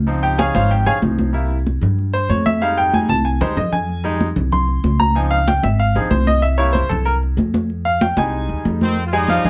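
A woody, thumpy upright bass opens this fiery, passionate salsa excerpt in F minor at 189 BPM, joined at once by ringing, high-tuned congas and a bright, up-front grand piano whose intimate solo, with audible action noise and long sustain, cycles through Dbmaj7, C7 and Fm7 in a small, moderately reverberant room, with a drum fill at 2.9 seconds before a punchy, tight horn section enters at 8.8 seconds.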